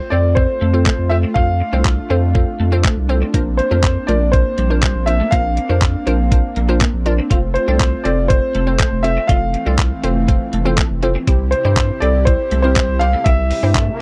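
A clean, thumpy 12-bit drum machine drives this carefree, upbeat dance-pop excerpt in a straight four, its kick, hi-hat and handclaps sitting up front from 0.4 seconds alongside a deep, thick saturated sub bass that pumps against the beat. A clear, polished grand piano carries the melody near the top of the mix, given a touch of slapback echo, while a soft, mellow supersaw holds full-bodied sustained chords in the background with the same pumping motion. A glassy, crystalline wavetable pluck adds bright, nasal accompaniment with chorus, and a twangy twelve-string electric guitar plays a compressed riff further back, shimmering with ensemble chorus. The harmony moves from F to Bbadd9, back to F and then to C, and a faint electronic riser enters at 13.6 seconds just before the cut. The sound is dry and close, like a 1970s-style studio recording with little reverb.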